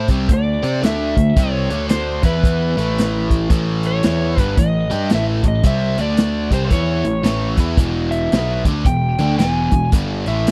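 A dry, close 1970s-style studio sound frames this gritty, driving slice of blues rock power trio and southern rock, swinging in 4/4 at 112 BPM. A bright, biting, double-tracked overdriven guitar riff sits up front beside a dark, round fuzz bass, while a punchy vintage acoustic kit with a medium-tuned snare and rolled-off top drives the groove. Over them, a shadowy overdriven slide guitar carries the melody as the chords move from D5 through C5 and E5 to A7 and E7.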